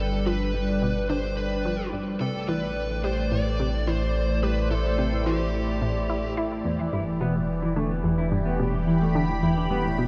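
Cosmic and mysterious, this excerpt of ambient, sequencer-driven space music moves at 108 BPM in a straight 4/4, centred on A minor and drifting through Gadd9, Am7 and Em. A swirling, detuned analog pad, up front and treated with phaser and chorus, holds sustained chords across the whole passage, while a deep sine sub bass anchors the low end from E1 to A1. From 0.3 seconds an analog pluck with a nasal, wave-folded edge, a fast attack and a short decay carries the riff, colored by chorus and tape echo. An overdriven, picked lead guitar through a small cranked amp sings the melody between G4 and D5 with tape echo until 6.3 seconds. At 6.8 seconds a dark, clean, fingered electric guitar enters with arpeggios from A2 to E4, also touched by tape echo, and the whole is set in a vast cathedral reverb that rings for nearly six seconds.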